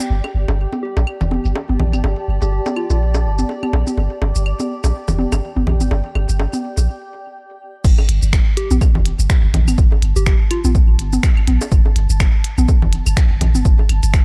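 A dark, dry production frames this sparse, hypnotic minimal techno cut from a longer piece, where clicky, low-passed hi-hats, finger snaps, shaker and crash sit beneath overdriven electronic toms, bongos, claves and congas trailed by delay, while a deep sub bass with a pitch-drop attack and a blurred granular cloud pad both pump to the sidechain, a round, gentle FM lead with chorus and a cassette-tape tint surfaces in two brief phrases starting at 0.8 and 8.6 seconds, and after a short break an up-front analog kick lands at 7.8 seconds to drive the drop.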